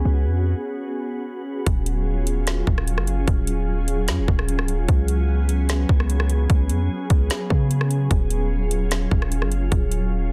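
Ethereal and melancholic, this atmospheric cloud-rap excerpt moves at 149 BPM in 4/4 with a half-time feel, sitting in Eb minor and tuned slightly low to A4 = 439 Hz. A glassy FM pad holds sustained chords throughout, its slow attack, long release, ensemble chorus and built-in reverb giving it a mellow, full-bodied shimmer that pumps against a sidechain. Underneath, a deep, boomy 808-style bass with a sine core and a noise layer sits up front, its fast attack giving way to a decaying tail. After a brief break from 0.9 to 1.7 seconds, a trap drum kit arrives with a hard-clipped kick, woody snare, rim click and metallic hats, playing up front until 10.0 seconds. The harmony alternates between Db7sus4 and Ebm11, all inside a digital ambience and a dense, heavily limited modern master.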